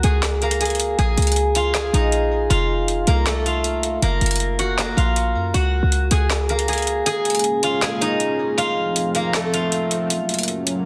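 A silvery, ringing steel-string zither opens this brooding, melancholic trap excerpt, its fingerpicked melody shaded by a low-pass filter and a digital delay, joined at once by a punchy, tight 808-style bass and an electronic drum kit of handclaps, metallic hi-hats and a woody snare, all sitting in a half-time feel. The zither, bass and drums are all placed up front. The chords move through a somber minor progression that cycles twice across the clip. The short bass stops at 7.0 seconds, and at 7.1 seconds a sweeping resonant pad enters underneath with detuned sawtooth tones, a slow attack, a filter swell and chorus, adding a full-bodied, evolving glow. Light reverb and digital ambience surround a dense, heavily limited modern master, and the passage is cut from a longer piece.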